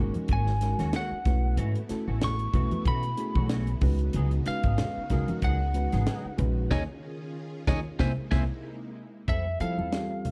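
A reedy, lightly overdriven electric piano, a vintage sawtooth string machine of violas and a clean, twangy electric guitar playing stabs open this soaring, funky electric jazz fusion excerpt at 94 BPM, over a woody, thumpy upright bass up front. A tight funk drum kit with a high-tuned snare and very quiet, low-tuned congas join at 0.1 seconds, and from 0.3 seconds a bright, slightly broken-up lead guitar with tape echo solos high above suspended ninth chords. A drum fill and band accent arrive at 6.7 seconds, and the strings stop at 9.3 seconds as the harmony settles on Fmaj9, all in a dark production with a small-room ambience.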